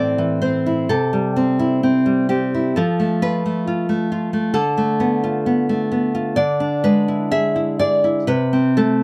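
A romantic piece for solo classical guitar in A minor, played with rubato at roughly 60-69 BPM in 4/4, its mood passionate and intimate across this short excerpt cut from a longer work. The fingerpicked nylon-string guitar sits up front with a full-bodied, warm tone, ranging from A2 to E5 under light reverb. Its harmony moves from Am through C, F, Bm7b5/D and E7/D before settling on Am/C near 8.3 seconds.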